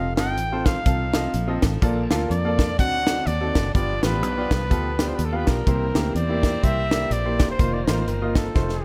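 Light reverb surrounds this short cut from a longer uptempo gospel piece, with a tight funk drum kit sitting up front, its high-tuned snare and tight kick captured naturally in a small room. The mood is reverent yet jubilant, moving at 125 BPM in 4/4 with a swung eighth-note feel. A punchy, close-miked trumpet carries the pop-style solo melody, while a woody, clear upright piano supplies accompaniment and a round, foam-muted fingered electric bass holds down the low end, also sitting up front. Very quietly behind them, a distant, nasal section of stopped French horns sustains metallic chords in a classical style, and from 1.8 seconds a bright, shouting tonewheel organ with key click, chorus vibrato and a slow rotary speaker adds its own faint sustained harmony. The changes run from F7 through Bbmaj7, D7b9, G7 and C7 before settling on F7sus4, and a drum fill at 8.6 seconds closes the passage.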